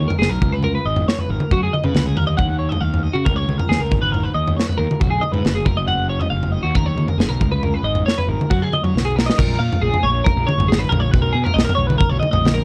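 A clean, chorus-lush twelve-string electric guitar spins intricate arpeggios over a fuzzy, overdriven picked bass and a punchy, up-front studio drum kit in this wistful math rock and midwest emo piece at 137 BPM in F# major, where extended chords such as D#m9 and G#m9 drift past in a dry, dark mix until a drum fill at 8.9 seconds opens onto a new section leaning toward Bmaj9.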